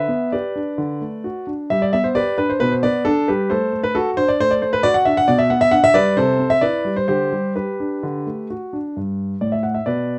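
A dark, intimate sound frames this short passage, with light reverb and a polished concert grand placed up front so that the clatter of its action is clearly audible. It is a playful, cheerful classical-period sonatina for solo piano, moving in four with a flexible, rubato feel. The piano carries everything on its own from 0.0 to 10.2 seconds, spanning from a deep bass up into its upper middle range. The harmony circles the home chord and its dominant, passing through inversions and a brief Am7/C before settling back. At 9.0 seconds the music turns into a new section, arriving on a plain G chord just as the clip is cut from the longer piece.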